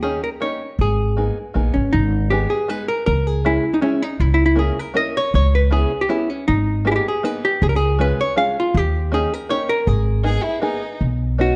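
Nostalgic and bittersweet, this musette waltz in G# harmonic minor sways at 159 BPM in 3/4, with a dark, clean hollow-body electric guitar carrying the picked melody up front over twangy, plunky fingerpicked open-back banjo and a woody, thumpy pizzicato upright bass, while a rich, bowed solo violin with vibrato adds a brief second line at 10.2 seconds, all set in a moderate recital-hall reverb with a dark, warm production in this short excerpt cut from a longer piece.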